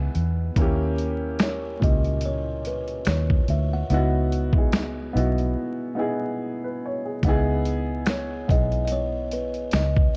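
Vinyl crackle and light studio reverb give this dark, hazy lo-fi hip hop excerpt a reflective mood at 72 BPM in C# minor, with a gently swung 16th-note groove. A woody, mellow upright piano muffled by a low-pass filter moves from a rootless minor-ninth chord through a dominant seventh flat-nine to a minor eleventh over a round, foam-muted electric bass and a gritty, compressed sampler-style kit with a thumpy kick, snare, finger snaps and hi-hat, all three sitting up front. At 1.4 s a soft, buzzing kalimba enters with a filtered, ringing melody alongside a very quiet, jingly tambourine; a short break arrives at 5.6 s before the opening section returns at 7.2 s.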